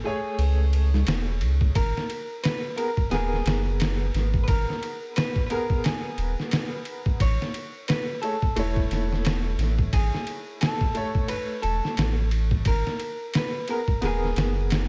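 A swung 16th-note groove at 88 BPM in 4/4 drives this dark, smoky trip hop piece in G# minor, with a gritty, pitched-down sampler-style drum kit entering at 0.4 seconds, its thumpy kick, medium-tuned snare and ride cymbal compressed and up front, alongside a deep, round sine sub bass thickened by tube saturation. From the very start, a clean, picked electric guitar carries the melody through tape echo, while a woody, open upright piano accompanies with tremolo and its own tape echo over chords moving from Amaj7 to G#madd9 and A. The sound is dry and close, with little reverb, and the piece is cut from a longer work.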